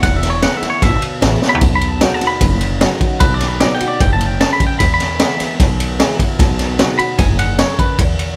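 A dry recording with little reverb opens this brief, rollicking rockabilly excerpt at 151 BPM in straight 4/4, moving between E and B chords. A bright, twangy electric guitar carries the clean, picked solo melody throughout, coloured by tape echo. A picked steel-string acoustic guitar with audible finger squeak plays underneath, a woody, thumpy pizzicato upright bass anchors the low end, and a gritty, saturated garage drum kit sits up front with a punchy kick, a high-tuned snare, ride cymbal and toms, dropping a drum fill at 1.4 seconds.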